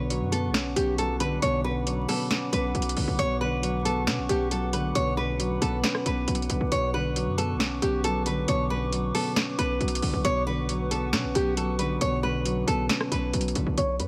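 A woody, fingerpicked nylon-string guitar carries the melody up front through a low-pass filter and digital delay in this eerie, hard-hitting half-time trap excerpt, joined by a boxy, mellow concert grand piano accompaniment, a warbling, nostalgic lo-fi pad with chorus, a punchy sine-based 808 bass, and a dry, booming analog drum machine with a crisp snare, rim clicks and metallic hi-hats, set in a lightly reverberant room beneath a layer of vinyl crackle.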